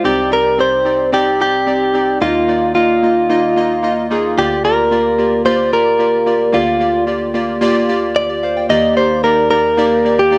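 Romantic and nostalgic, this short pop fragment pairs a clean, picked electric guitar, recorded direct and compressed, carrying the melody up front with a warbly cassette-tape pitch drift, alongside round, detuned analog keys with chorus and a fast, decaying attack filling in the accompaniment. The harmony moves from Cmadd9 through Ebsus2 and Bb6/D before settling on Ebmaj7 at 8.7 s. The music sits in a moderate studio reverb, with the dulled top end of a home cassette recording.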